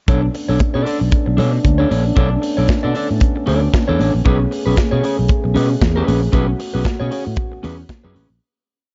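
A small room ambience gives this short disco piece a dark, warm production with its highs rolled off, and it fades out from 6.3 seconds to the end at 8.4 seconds. Danceable and glamorous, it moves at 115 BPM in 4/4 with a light sixteenth-note swing in B dorian, framed as a breakdown that shifts from Bm9 to Amaj9 at 4.2 seconds. Up front, an acoustic drum kit with a tight kick and medium-tuned snare plays a four-on-the-floor disco beat with open hats on the off-beats, while a bright, growly fretless electric bass carries a syncopated disco line full of muted ghost notes and chromatic approach notes. A slightly broken-up electric guitar, also up front, picks a choppy sixteenth-note disco part, and a dark, tight French horn section holds a sustained pad in the background. Very quietly beneath it all, high-tuned, damped congas played with soft hands sit close and dry, keeping a groove with a slap on two and open tones on four.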